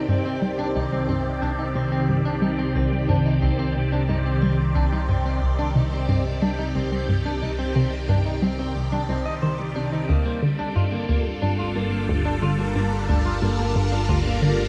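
A round, sawtooth-and-square analog pluck carries a low riff with a fast attack, short decay and a noise layer, thickened by chorus and trailed by tape echo. This ambient, sequencer-driven space music feels mysterious and expansive, cut from a longer piece in a straight 4/4. Above it, a phased string machine holds swirling, bright, vintage chords that sit up front, swelling in slowly and releasing long through ensemble chorus and phaser. A compressed, picked electric guitar at the edge of break-up spins arpeggios through tape echo, while an evolving, warbling analog drone with resonant pulse-width modulation enters at 0.7 seconds to anchor the bass in a mellow chorused haze. A filter sweep runs across the synth arpeggio sound throughout, and the harmony moves from Cmadd9 to Gm7 at 10.1 seconds, all wrapped in a lush hall reverb.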